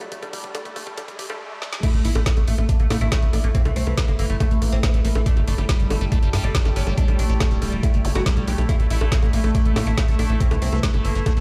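An overtone-sweeping drone, a squelchy acid bass under a filter sweep, a warbling lo-fi pad, an overdriven, knocking kick up front and a drum fill open this intense, driving psychedelic trance excerpt at 140 BPM, building with a riser and swell until the drop at 1.8 seconds brings in a bright, woody oud melody with phaser and delay and a tight, punchy sequencer bass, with woody snare, bright hats, bongos and crash over the pumping G5 and A5 chords in a bare stone room.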